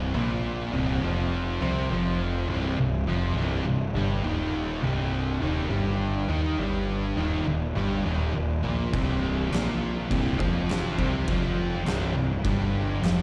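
In straight 4/4, this ominous, sludgy stoner and doom metal excerpt grinds through C5 and Eb5 power chords. An overdriven, fuzzed electric bass sits up front beneath a background riff wall from two dark, thick fuzz guitars, one with slapback echo, and a double-tracked, overdriven sludgy guitar also carrying slapback echo. An oversized, low-tuned acoustic kit with boomy kick, fat snare, dark cymbals and a gritty, pumping room sound crashes in at 8.9 seconds, all heard as a live gig through the venue's PA with small-room ambience and recital-hall reverb.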